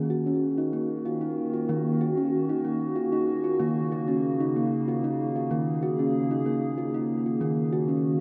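A steel tongue drum opens the recording at 0.0 seconds, playing arpeggios with firm rubber mallets in a round, pure, ringing tone that sits up front and carries a diffuse ambient delay. At 0.3 seconds a warbly, tape-like pad joins with sustained chords, its detuned, wave-folded blend of square, triangle and sine waves giving a nostalgic, lo-fi, mellow color, shaped by a slow attack, long release, chorus and its own reverb. This meditative world piece moves at 94 BPM in a straight 3/4, centered in E-flat minor, with the harmony shifting from Ebm to Gb at 3.6 seconds and returning to Ebm at 7.4 seconds. The whole is bathed in a cathedral-like reverb with a 6.2-second decay, lending the gentle mood a spacious, hovering stillness. Cut from a longer piece, this brief passage is a single unbroken section in which both parts continue together until the end.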